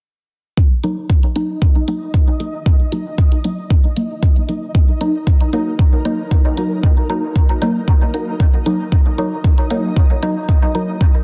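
A steady, straight 4/4 pulse at 115 BPM drives this short dub techno passage in Eb minor, with a deep, layered electronic kick drum entering at 0.6 s and sitting up front alongside a produced electronic hi-hat from 0.8 s. Both drums carry the close character of a small room. Over them, a muted, detuned chord stab built from sawtooth and square waves holds on Eb minor, its plucky attack decaying into chorus, phaser and dub echo while a filter sweep runs through it and sidechain pumping makes it breathe against the kick. From 1.5 s a faint, flickering granular texture with a slow attack and long release hangs high in the background, soft and pumping, wrapped in its own reverb. The mood is deep and nocturnal, and the dense, heavily limited master keeps the mellow layers tightly packed under a light reverb.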